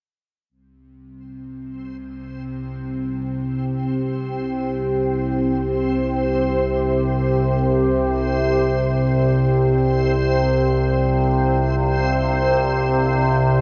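A resonant, overtone-sweeping drone sits up front in this dark, unsettling ambient excerpt, entering at 1.2 seconds low in the register and blending sawtooth and sine tones with chorus and reverb as its overtones keep moving. At 1.8 seconds a reversed, granular texture joins higher up, soft-attacked and bright, swelling through detuned triangle tones with shimmer reverb as it fades in across the recording. A deep, moody pad arrives at 2.8 seconds with sustained chords built from unison, detuned sawtooth and sine layers over a sub octave, shaped by a moving notch and colored with chorus and shimmer reverb, while a fade-out runs across its whole span. The music floats in free time, with every part holding long, slowly released tones. The mix is dreamy and soaked in a moderate plate reverb, giving the brief cut from a longer piece a hazy, suspended sense of dread.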